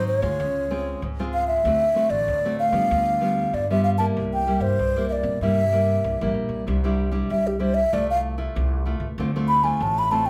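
Joyful and playful, this samba and choro excerpt sets an airy, hollow wooden flute up front, with a crisp attack and lifted highs, over full-bodied fingerpicked nylon-string guitar with audible finger squeak and a growly, plucked upright bass, all played live in one large studio with moderate reverb, before the flute takes a mellow solo from 6.7 seconds.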